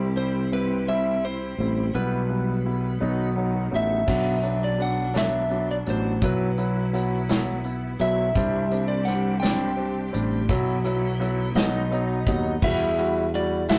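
A six-eight pop ballad in E minor at 56 BPM, this dramatic, aching excerpt opens on a growly fretless bass, an intimate concert grand piano with audible action noise and long sustain, and a bright, lush bowed string section, while an electric slide guitar, slightly broken-up and compressed under fingerpicks, carries the melody from 0.2 seconds. An acoustic drum kit played with bundle sticks, with a punchy kick and dark cymbals, enters at 4.1 seconds as the harmony moves through suspended chords, and the strings drop out at 12.6 seconds as the piece settles on an Emadd9 chord. The rough rehearsal-room recording carries tube saturation and a moderate studio reverb.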